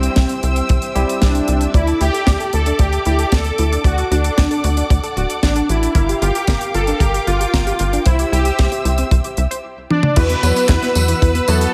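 Danceable and bittersweet, this short cut from a longer italo disco track moves at 114 BPM in a straight 4/4, with a bold, fat analog synth brass carrying the melody, its detuned, warbling tone thickened by chorus and delay. Alongside it a lush symphonic string section holds sustained chords in a high register, its bowed ensemble sound roughened by a vintage 12-bit sampler grit. A punchy sawtooth sequencer bass sits up front and drives the groove alongside a dry, tight kick, while a funk drum kit with a high-tuned snare adds handclaps, hi-hat, tambourine, toms and crash cymbal, including a drum fill at 9.9 seconds. A barky, lightly overdriven tine electric piano plays stabs through a combo amp at the opening and again from 10.2 seconds, and from 1.7 seconds a round, detuned analog pluck spins bright arpeggios with chorus and delay. The harmony moves from C through Dsus2, D and Gm7 back to C before shifting to Esus2 for a new section, all set in light reverb and studio ambience.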